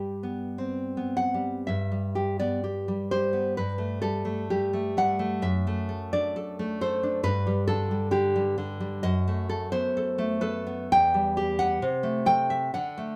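A solo nylon-string guitar, up front with a full-bodied, deep classical tone, carries this sunny, romantic fingerpicked excerpt in G major at a rubato 54-68 BPM in 2/4, ranging from E2 to G5 through chords moving from G and Gmaj9 to D/F#, Em and Am/C, all set in a wet studio reverb.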